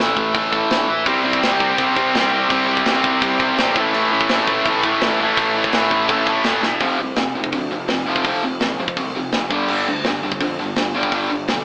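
Punk rock with a rebellious, energetic drive, cut from a longer piece and heard as a band playing live in one room through an AM radio sound with moderate reverb, where a bright overdriven electric guitar and a tight distorted guitar tucked in the background play riffs over a growly fuzz picked bass and an up-front metal drum kit with bright cymbals and a tight kick, while a double-tracked high-gain guitar joins from 1.1 to 6.8 seconds before a drum fill at 6.6 seconds leads into the second section.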